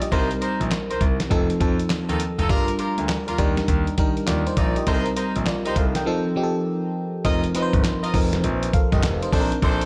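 Confident and bouncy, this short excerpt of swung new jack swing R&B moves at 101 BPM, with a gritty, compressed sampler-style drum kit of thumpy kick, snare, hi-hat and handclaps up front, and a glassy, bell-like FM electric piano with chorus comping over Cm7, F7, Gm7 and Ebmaj7. A concert grand piano carries the bass line with deep, intimate tone and audible action noise, while a distant, roomy horn section adds jazz-style stabs through tape echo, all in light reverb. The drums drop out from 6.1 to 7.2 seconds, and the second section then moves to F7sus4 before landing on Bbmaj9.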